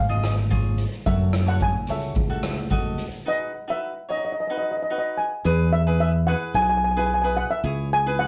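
A straight four-beat calypso groove from a street-band drum kit, with boomy kick, hi-hat and rim click, carries this festive, sunny fragment of a longer piece until the drums stop at 3.2 seconds. A mellow, shimmering steel pan leads the melody up front, struck with soft rubber sticks, over a round, direct fingered electric bass and crisp picked cavaquinho accompaniment, all in a rough rehearsal-room recording with a wet studio ambience.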